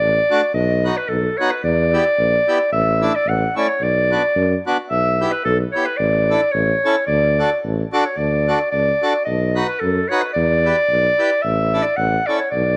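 This alpine folk piece for a dance band is bouncy and jolly, moving at 110 BPM in a straight 2/4 in D major. A bright, vintage-toned clarinet carries the melody up front with a soft attack and classical poise, staying between A4 and F#5. Beneath it, a warm tuba holds the bass in a low A1 to F#2 range, its light vibrato adding a gentle roundness. A reedy, airy accordion fills in the accompaniment from 0.3 seconds, sitting lower in the mix. The harmony moves from D through B, Em and a suspended A resolving to A, and the opening phrase returns at 8.2 seconds. A moderate echo chamber reverb lends the whole band a roomy glow in this short cut from a longer piece.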